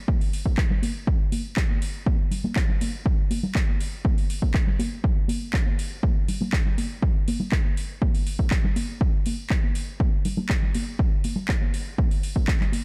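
Driven by a straight 4/4 pulse, this feel-good, joyful house excerpt rests on a punchy, overdriven electronic kick that sits up front, re-recorded in a large room. A layered house drum kit adds handclaps and metallic hi-hats with its own overdrive and roomy character, and a filter sweep runs across the drums from start to finish. Alongside them, close and dry congas and tambourine played with soft hands carry sidechain pumping and a low-pass filter, all within a dark, digitally ambient production.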